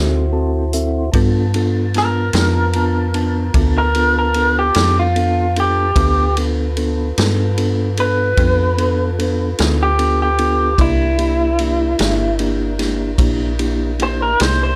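Slow blues with a soulful, rollicking mood, where a mellow tine electric piano fill opens before a slightly broken-up, lo-fi electric guitar solo takes the lead from 1.1 s over metallic FM bass, a vintage drum kit with dark cymbals and a punchy kick entering at 0.7 s, and a soft, flute-like tonewheel organ holding chords in the background through a slow rotary speaker, all in a dry mix cut from a longer piece.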